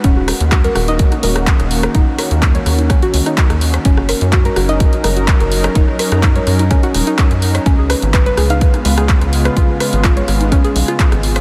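Progressive house at 126 BPM in Eb minor, emotional and driving, moving from Ebm7 to Db7 at 7.7 seconds in this brief cut from a longer piece. A lush, detuned unison pad holds sustained chords with chorus and sidechain pumping, while a soft, round pluck with a wave-folded edge plays arpeggios through chorus and diffuse ambient delay, and a tight, saturated sequencer bass pumps beneath. An up-front, overdriven electronic kick re-recorded in a large room joins a layered deep house kit of handclaps, hi-hat and rim click, with very quiet, tape-tinged rim click and congas beneath it, all set in light digital reverb.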